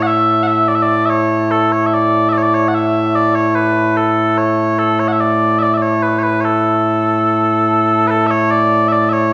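This is Scottish traditional pipe music, proud and stirring, moving at 73 BPM in a straight 2/4 in A major. A set of small bagpipes plays solo from 0.0 to 9.3 seconds, their tone mellow and sweet, with a continuous sound touched by vibrato. The pipes sit up front and span A2 to F#5. The opening phrase runs to 8.1 seconds, where it begins again before the recording breaks off, cut from a longer piece. A moderate stage reverb lends the pipes a sense of space, with a tail of about 2.1 seconds.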